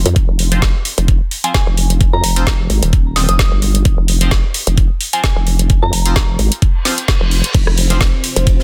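A dense, heavily limited mix with little reverb opens this bass house cut, taken from a longer piece, swaggering and bouncy at 130 BPM in F minor with a 55% swing on the 16ths. A nasal, wobbling vowel-sweep bass sits up front from the start, its dark tone thickened by chorus and tube saturation and shaped by sidechain pumping, alongside the knocking electronic kick. A garage kit adds a crash, metallic hi-hats, a rim click and a woody snare, both drum parts carrying a small-room character. A bright, band-passed chord stab with phaser and delay pumps quietly underneath, while a soft, pure FM bell melody with chorus and delay floats high above from 1.4 to 6.3 seconds. An electronic reverse cymbal sounds at 6.8 seconds, then a very quiet brushed jazz kit with dark cymbals and a high-tuned snare slips in at 7.5 seconds, just before a moody, detuned analog pad with a slow attack arrives at 7.8 seconds.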